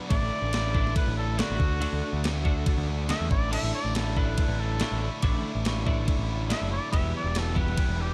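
A dark, dry mix frames this upbeat, carefree indie rock excerpt at 141 BPM, where a clear trumpet with light vibrato, scooped notes and slapback echo carries the solo melody over a biting overdriven guitar riff, a bright, twangy chorused twelve-string riff sitting in the background, and a growling, round overdriven bass up front. A gated 80s digital drum machine supplies a thumpy kick, crash, ride and gated-reverb snare, while a very quiet sawtooth string machine cello patch holds mellow sustained chords through Asus4, D and Em. At 3.5 seconds a bell-like glockenspiel played with soft plastic mallets adds a ringing second line from a boxy small room.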